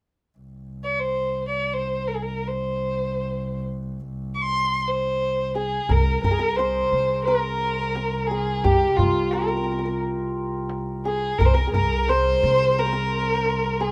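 A dark, bowed violin carries the melody from 0.8 seconds, sitting up front with vibrato and a woody yet distant tone that gives this Persian modal piece a soulful, melancholic cast. Beneath it, a bowed double bass holds a drone from the start, its soft attack and airy bow lending a rich, nasal, floating quality. At 5.6 seconds a hammered santur joins with a shimmering, ringing second line. From 5.9 seconds a thumpy pizzicato upright bass with steel strings adds a low line, while a deep tombak plays percussion in the background. Light reverb surrounds the ensemble in this short cut from a longer piece.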